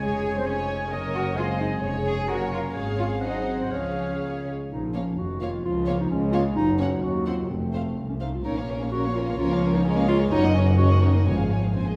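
A wet recital-hall reverb sets this symphony orchestra well back in the room, in a quick, dramatic and stormy classical-period movement in 2/4 at 128 BPM, played with rubato, that turns from Db major to Bb minor at 4.7 s. A chamber violin section carries the melody with light vibrato and sul tasto bowing, joined by a second violin line, a dark solo clarinet and, until 4.5 s, an airy, bright flute group and a smooth-topped oboe. Beneath them sit a shadowy viola section, a mellow, loose French horn section holding chords, and cello and clear, floating double bass sections, with round, very quiet timpani on calf heads touching in at 11.3 s.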